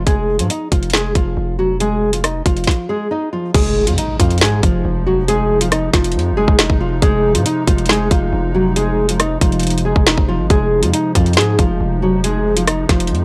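Drill hip hop at 138 BPM in a half-time feel, this cold, dark excerpt sits in F phrygian over an Fm7 chord, led by an up-front, full-bodied fingerpicked nylon-string guitar with a deep classical tone. A heavy, saturated 808-style bass growls under a produced electronic drum kit of hard-clipped kick, woody snare, metallic hats, rim clicks and crash. At 3.5 seconds a hollow, flute-like pad with chorus drifts in softly behind them, joined at 3.7 seconds by a very quiet electronic impact, all captured with a dry, gritty cassette-tape character.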